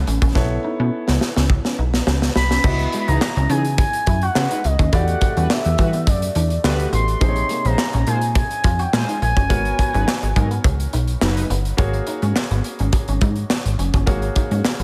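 A plucky, punchy analog bass and a clear grand piano with slapback echo open this slick, late-night early-eighties boogie funk cut at 105 BPM, joined by a bright, twangy clean guitar riff with subtle chorus in the background and a polished studio kit whose fill runs from 0.4 to 2.6 seconds, before a smooth, expressive synth lead takes the melody at 2.4 seconds and fat, brassy detuned synth brass with tape echo adds a second line from 3.1 seconds over minor eleventh chords in light small-room reverb.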